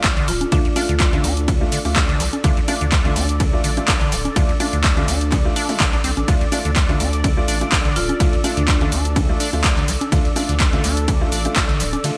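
Bright, 1980s-style digital production with light reverb frames this raw, driving acid house excerpt. An overdriven electronic kick re-recorded in a large room joins an up-front analog drum machine of congas, handclaps, hi-hat, ride cymbal and shaker with gated reverb, over a deep, saturated sub bass and a squelchy, resonant square-wave acid bass riff with a filter sweep and digital delay. A baby grand piano adds open, delayed stabs, and a woody marimba with medium hard mallets plays brief melodic phrases at 0.3 and 8.0 seconds. In the background, a smooth, detuned analog pad holds sustained chords with chorus and sidechain pumping alongside an ethereal, airy pad texture.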